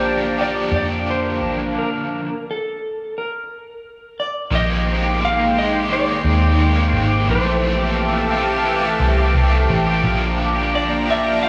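A round, foam-muted electric bass sits up front in this floating, ethereal dream pop excerpt at 87 BPM, beneath a dark, clean lap steel slide melody with tape echo. A slightly broken-up, twangy electric guitar picks arpeggios through ensemble chorus and tape echo, while a bright, overdriven stack guitar with tremolo and lush chorus adds accompaniment and a thick, detuned sawtooth pad holds slow-blooming chords. After a stop from 1.8 to 4.5 seconds, the harmony drifts over a Bb bass through Abmaj7/Bb and Fmaj9/Bb, all in a dry, gritty recording touched with light digital ambience.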